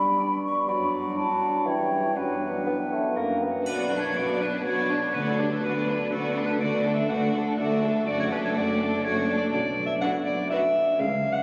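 A hollow, mellow concert flute, sustained French horn chords and a ringing, fingerpicked harp open this playful, sneaky film cue in B minor at 123 BPM in 3/4, with the harp's arpeggios running through the whole 11.4-second excerpt. They are soon joined by a bright, roomy clarinet and a vintage-toned bassoon. At 3.7 s the strings enter, with violin sections carrying a smooth vibrato melody and second line over violas, a very quiet, distant cello section and rich double basses, while a close, dry triangle sounds briefly, all bathed in a drenched cathedral reverb with the feel of a phone recording in the room.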